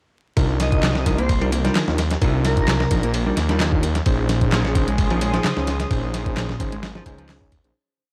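A gritty, compressed sampler-style drum break drives this energetic, swaggering breakbeat piece from 0.4 seconds, with a thumpy kick, medium-tuned snare, hi-hat and ride sitting up front as a looped break with edits, lightly swung. A quieter, layered electronic kit of closed hi-hat and handclaps rides over the break. Underneath, a thick, menacing detuned saw bass with tube saturation holds long gliding notes, while a bright, punchy picked electric bass repeats a 16-step riff. A mellow tine electric piano adds dotted-rhythm stabs in close voicing through analog delay, and early on an airy, dreamy lead drifts in short answering phrases with vibrato, coloured by chorus, phaser, delay and a lo-fi AM-radio tint. The harmony moves from Cm11 to Bbm11 at 4.1 seconds, and shortly after, at 4.6 seconds, a dark, moody analog pad enters with slow-attack chords and sidechain pumping. The piece fades out from 5.3 seconds in a dry, hardware-recorded sound flecked with vinyl crackle.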